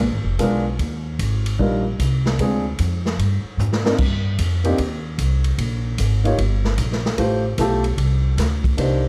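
Swinging and joyful, this short big band jazz clip at 150 BPM pairs a woody, up-front pizzicato upright bass with a natural-sounding drum kit featuring a punchy kick, medium-tuned snare, hi-hat, ride, crash and toms, while a warm grand piano enters at 0.4 s with lush chords like Ebmaj9 and Bb7b9 before a drum fill at 3.6 s leads the music from Eb major into C minor at 4.0 s, all set in a dark production with light reverb.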